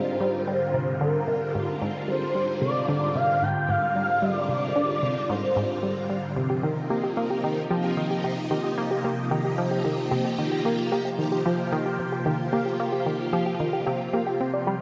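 Cosmic and hypnotic, this short cut from a longer piece of ambient, sequencer-driven space music moves in a straight 4/4 pulse. A tight, driving sequenced synth riff with a detuned sawtooth edge and a filter-pluck attack sets the motion almost from the start, its chorus and analog delay giving it an evolving shimmer. Alongside it, a vintage string machine holds swirling, bright chords up front, its slow-attack sawtooth tone colored by ensemble chorus and phaser. An expressive synth lead sings a smooth, vibrato-touched melody with a soft attack until 5.8 seconds. The harmony moves from Abadd9 to Cm at 6.4 seconds, and a soft, round pluck enters at 6.5 seconds with dark, nasal arpeggios that decay quickly into chorus and delay. A wet plate reverb and the worn, warbling pitch drift of old cassette tape give the whole recording a hazy, drifting atmosphere.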